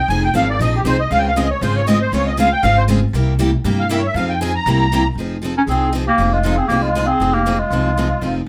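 A fast swing at 236 BPM in F minor drives this fiery snippet of acoustic string swing, with two bright, freshly strung steel-string guitars picking the accompaniment, finger squeaks and all, over a dark, thumpy upright bass on gut strings. A reedy, shimmering musette accordion takes a solo over Fm7, Dbmaj7 and C7 changes for the first 5.2 seconds. At 5.6 seconds a clear clarinet enters up front with vibrato, a soft attack and a vintage subtone, all set in a moderate studio reverb.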